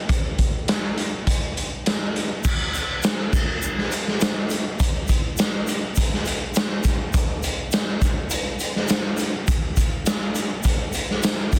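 Wistful yet upbeat, this straight 4/4 rock cut from a longer piece moves at 102 BPM on a raw garage drum kit, up front and gritty with a punchy kick, medium-tuned snare, hi-hat, crash cymbal and tambourine in a bright stone room, joined at 2.4 seconds by a grainy tube shaker sitting in the background, all captured with little reverb and a dense, heavily limited modern master.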